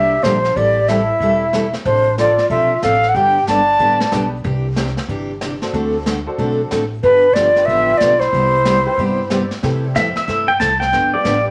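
Western swing country in C major, this playful, down-home excerpt moves at a brisk 185 BPM with a 64% swing on the eighth notes. A breathy, bright concert flute carries the melody up front with vibrato and a crisp attack, while a clarinet with a jazzy vibrato adds a second line; both pause together after 4.3 seconds and return at 7.0 seconds. Underneath, a picked steel-string acoustic guitar with audible finger squeak and a woody, thumpy pizzicato upright bass hold the groove, joined by a vintage brush kit with a punchy kick and a rolled-off top. A detuned, jangly honky-tonk upright piano sits in the background from 0.9 seconds. At 10.0 seconds a twangy, clean pedal steel guitar, played with fingerpicks and slide and marked by volume swells, steps up front for a short solo over C6 and G7 chords. The whole band sits in a moderate studio reverb.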